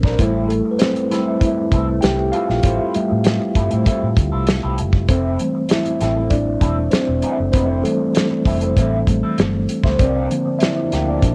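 Lush 1970s-style soul at 98 BPM in F major, this romantic, smooth excerpt features a mellow tine electric piano up front, playing a solo through its built-in speakers with a cassette-tape tinge, over an up-front drum kit with a tight kick, a medium-tuned snare and a rolled-off top, and a dark, round, foam-muted fingered bass. A slightly broken-up electric guitar picks a wah-inflected riff from a small old amp, and the harmony moves from Fmaj7/A to Fmaj7 at 5.1 seconds. At 10.0 seconds a distant French horn section adds sustained C9sus4 chords with light vibrato, all within the cozy ambience of a small-room home recording on cassette.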